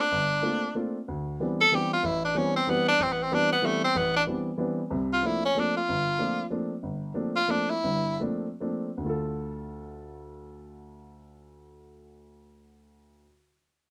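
A swung triple-metre lilt carries this short jazz fragment, cut from a longer piece, with a cool yet intense mood. An edgy tenor saxophone takes the melody up front, its vibrato-laced, jazz-style voice stepping into a solo at 1.1 seconds and stopping at 8.2 seconds. Beneath it, a baby grand piano with a natural, short-sustained tone supplies the accompaniment from the low register upward, sitting up front but a touch lower in level than the horn. The harmony leans on suspended thirteenth chords before settling onto a minor chord, and the pace eases back toward the close of the solo. The piano carries on alone after the saxophone drops out, and light reverb lends the pair a modest sense of space.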